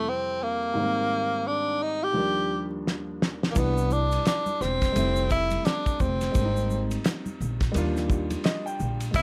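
A breathy tenor saxophone with vibrato, subtone and scooped notes leads this cool, smooth jazz-hop excerpt at 86 BPM with a swung feel, floating over a dark, mellow upright piano moving through major-ninth chords, joined at 2.9 seconds by a cloth-damped, thuddy drum kit with a fat snare and dark cymbals, then at 3.6 seconds by woody pizzicato upright bass and bright egg shaker and congas tucked in the background, all wrapped in light reverb and vinyl crackle, with a piano fill closing it out at 8.1 seconds.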